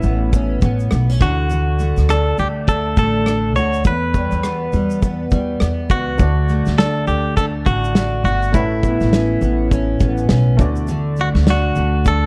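Acoustic pop with a heartfelt, easy-going swing, where a twangy, clean electric guitar carries the melody through spring reverb and tape echo over an up-front, double-tracked steel-string acoustic guitar, a woody, thumpy pizzicato upright bass and a loose indie drum kit of tight kick, rim click, shaker and snare in a pumping small room, while a baby grand piano joins softly in the background at 6.2 seconds.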